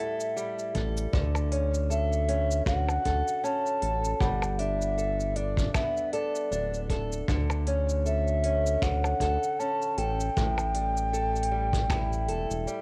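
Recorded at home onto cassette in a small room, this pastoral, playful folktronica fragment, cut from a longer piece, opens with a mellow, airy wooden baroque flute carrying the melody through a gritty vintage sampler and tape echo, its vibrato and tongued notes set over a boxy, woody old ladder-braced acoustic guitar picking arpeggios on old strings. A minimal electronic click kit of finger snaps, clicky hi-hat, percussion blips and shaker slips in at 0.2 seconds, then at 0.8 seconds a round, deep analog bass sits up front with a dark, evolving tone blending sawtooth, sine and ring modulation. A punchy, rolled-off brushed kick drum joins at the same moment, all under a gentle swing as the chords drift between Dmaj7 and Gadd9.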